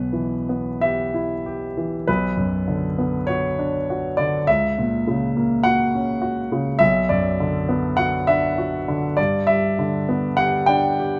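Melancholic and yearning, this short fragment of a romantic classical nocturne unfolds at a slow 42-52 BPM in 4/4, its pulse stretched and pulled by a free rubato feel. A single grand piano carries the whole piece, its tone warm, polished and placed up front, ranging from B1 in the bass to G5 at the top. The harmony drifts from Em/B through Bm and F#7/C#, returning to Bm at 6.8 seconds before settling onto G at 9.2 seconds. Close, detailed microphones give the instrument a present, intimate quality, while light reverb adds a gentle sense of space around it. Lasting 11.2 seconds, the passage is cut from a longer piece and feels like a brief glimpse into a larger whole.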